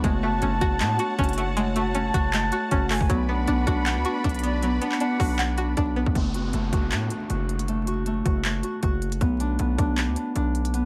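Crisp hats, handclaps and a hard-clipped kick from an up-front trap drum kit drive this dark, melancholic hip hop and trap excerpt at 157 BPM in half-time, in F# minor, over a heavy, saturated, distorted 808-style bass. A ringing, fingerpicked Celtic harp with tape echo plays arpeggios throughout. A twangy string-like resonator pluck with chorus and phaser, a woody bowed symphonic string section holding sustained chords, and an airy, distant silver concert flute with tape echo carrying a second line fill roughly the first six seconds. A downlifter enters at 6.2 seconds, all under studio reverb and vinyl crackle, as the chords shift between F#m and Bm.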